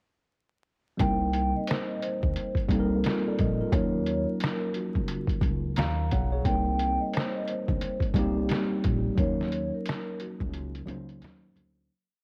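Reflective and nostalgic, this short lo-fi hip hop piece at 88 BPM swings gently over a Cm7 to Ebm7 progression. A muffled, pitched-down sampler drum kit with a thumpy kick and fat snare slumps up front in an off-grid beat, while a woody, growly pizzicato upright bass plays a sparse line with chromatic approach notes, and a worn, slightly out-of-tune tine electric piano pushes drop-2 chords in a repeated loop, dressed with grace notes and short fills. Above them, a soft-mallet vibraphone rings a short, band-limited looping melody with slow motor vibrato until 10.7 seconds, and the whole piece sits in cassette tape, vinyl crackle and light reverb before fading out from 9.2 seconds into a brief break.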